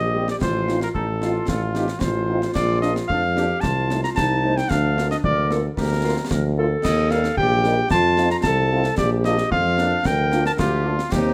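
A warm cornet with light vibrato leads the melody up front from the start of this proud, festive military-style march for wind band in Bb major at 112 BPM in 2/4, over a distant, roomy woodwind second line and a clear solo tuba bass, joined at 0.2 s by a mellow French horn section in the background and at 0.3 s by close, dry concert snare, bass drum and dark clash cymbals, all in a moderate large studio reverb as the chords move from F7/A through Adim/C and Eb back to Bb.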